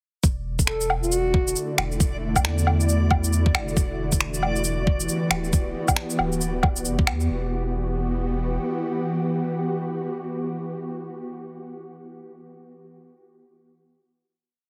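Ghostly and nocturnal, this future garage piece rides a skittering, shuffled two-step beat of an overdriven, knocking electronic kick with shaker, finger snaps and woodblock up front, while a round sine sub bass holds long gliding notes and a reversed, granular texture sustains a bright, dreamy high note. An ethereal, detuned pad drifts through slowly shifting chords with chorus, reverb and sidechain pumping, and a dark alto saxophone with light vibrato and tape echo slips in a brief classical-style phrase from 0.7 to 1.6 s. The groove drops away at 7.3 s, and the sub bass lingers until 8.6 s while the pad holds a final chord to 10.8 s, all within a lush hall and a heavily compressed, radio-like sound.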